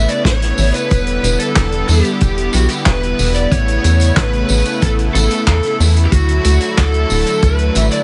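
The piece opens with an overdriven electric guitar lead, dark and picked through a small cranked amp with digital delay. A shimmering vintage string-machine violin line sits in the background with ensemble chorus and delay, alongside a bold, brassy analog pad carrying sustained, detuned chords that pump with sidechain and drift with chorus and vibrato. A punchy sequencer bass, sawtooth and square with ring modulation and a fast plucked filter, drives the low end up front. The acoustic soul drum kit arrives at 0.1 seconds with handclaps, hi-hat, a medium-tuned snare and tambourine in a tight booth sound, and a dry, mid-forward kick joins at 0.2 seconds. This cinematic, nocturnal synthwave excerpt moves at 92 BPM in a straight 4/4, tuned to A4 = 437 Hz, cycling through Aadd9, Em7 and Dadd9 under light studio reverb with a rolled-off top.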